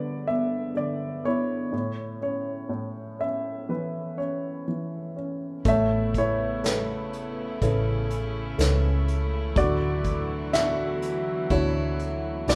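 Acoustic folk-pop ballad at 62 BPM, intimate and heartfelt, opening with a dark upright piano alone carrying the melody, its mellow, woody tone slightly detuned and up front with audible action noise. At 5.7 seconds the band joins as if playing live in one room with light reverb: a round, foam-muted fingered electric bass, a vintage brush kit with a tight kick and rolled-off top, and an old ladder-braced acoustic guitar picking boxy arpeggios on aged strings in the background. A distant chamber string section, bowed with soft attack, floats sustained chords from 5.6 seconds as the harmony moves from Aadd9 to Dadd9 in this fragment of a longer piece.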